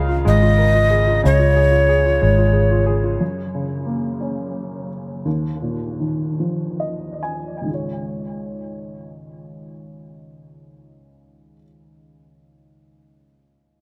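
Up front, a mellow tenor recorder carries a brief, airy melody between 0.3 and 2.9 seconds, its crisp chiff and vibrato trailing off into dub echo. This is a swaying, romantic pop ballad in six-eight, in Db major, moving at a slow 44-61 BPM counted in dotted quarters and cut from a longer piece. A worn, woody upright piano, slightly detuned and also treated with dub echo, provides the accompaniment throughout, while a vintage muted fingered electric bass adds a dark, round, punchy foundation until 3.2 seconds. The harmony moves from Db6 and Db to Gb and Ebsus2, with the pace slowing through the middle stretch and a piano fill arriving at 6.4 seconds before settling on Dbadd9. Light reverb and a small room ambience give the echo-heavy mix an intimate feel.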